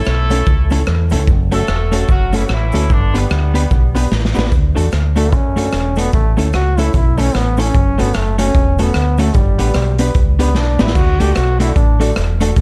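A deep, round dub bass sits up front alongside a gritty, saturated garage drum kit with dark cymbals and a punchy kick, driving this upbeat, bouncy ska excerpt with a swung feel. A clear horn section carries the opening melody with slapback echo until 4.0 s, and after a drum fill a bright, punchy trombone takes a solo from 5.2 s over a dark, clean electric guitar with warbly pitch drift and woody upright piano stabs. A grainy cabasa sits very quietly beneath, and the whole production is dark with studio reverb.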